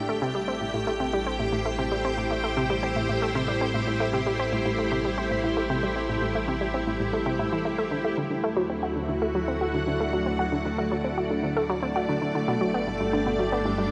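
Ambient, sequencer-driven space music with a hypnotic, expansive mood unfolds in a steady, straight four, heard as a short cut from a longer piece. Up front, a lush, vintage string machine holds sustained chords with a slow attack and long release, its sawtooth tone thickened by a sub octave and ensemble chorus. Beneath it, a round, nasal analog pluck repeats a bright riff with a fast attack and short decay, carried on chorus and analog delay. A fat, thick analog bass sustains low notes with a filter sweep, while a fingerpicked concert harp fades in gradually in the background, its ringing acoustic arpeggios trailing through analog delay. The harmony moves from Am7 to Dadd9 at 8.2 seconds and Gsus2 at 12.3 seconds, all bathed in a huge, wet ambient reverb.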